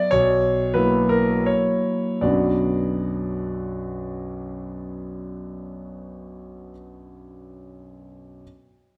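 Nostalgic and wistful, this brief fragment of a longer romantic piece is a triple-time dance in B minor for solo concert grand piano, its dotted rhythms shaped with rubato as the tempo moves between 72 and 106 BPM and slows through the opening 2.2 seconds. The piano sits up front, bright and brilliant with deep bass and long sustain, reaching from B1 to D5 as an F#7 over B resolves to B minor at 2.2 seconds. A wet recital hall reverb surrounds the natural tone, and the piano sounds until 8.4 seconds.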